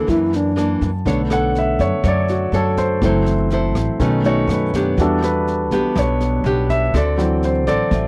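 A dry, close recording in a 1970s studio manner frames this breezy, sunny bossa nova fragment, cut from a longer piece and set in a straight four. An airy alto flute with a wooden head opens up front with tongued, unsteady notes and vibrato, heard only until 0.8 s. Beneath it, a dark nylon-string guitar is fingerpicked in classical fashion with audible finger squeak. A woody pizzicato upright bass on steel strings holds the low end, and a brushed kit in a small room adds rim clicks, a medium-tuned snare and a punchy kick. The concert grand piano enters at 0.6 s and takes a solo from 1.1 s to the close, its intimate, polished tone sitting up front with deep bass and audible action noise. The harmony moves from F#7alt through Bm9, F#m7b5 and B7 to Em7 and D7.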